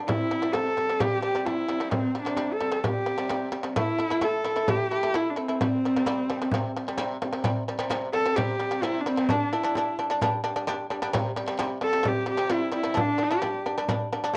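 A straight, galloping 4/4 pulse at 130 BPM drives this Mongolian folk excerpt in the C gong mode, carried by a small, bright frame drum that sits close and dry in the mix. From the first moment a plucked, fretless shamisen rolls out arpeggios, its acoustic tone percussive and buzzing and placed up front. At 0.1 s a single bowed horsehead fiddle takes the melody, husky and focused on horsehair strings, with vibrato and portamento giving its line a vast, open-air feel; it has a cassette-tape coloring and stays close until 13.7 s. The harmony rests on C5, reaching to A5 and G5, and a second section begins at 7.4 s. The home cassette recording sounds soft-edged in the highs, with a wet small-room reverb around the players.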